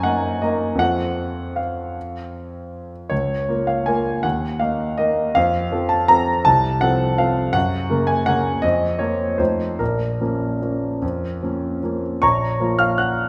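A clear, natural grand piano sits up front from the first moment, playing a classical waltz in 3/4 in Bb minor with an elegant, nostalgic mood and a rubato feel that moves between 144 and 174 BPM. The solo piano spans Bb1 to Gb6, and its harmony passes through Gb and F before settling on Bb minor at 9.8 seconds. A wet recital hall reverb with a 1.7-second decay surrounds the instrument in this short passage cut from a longer piece.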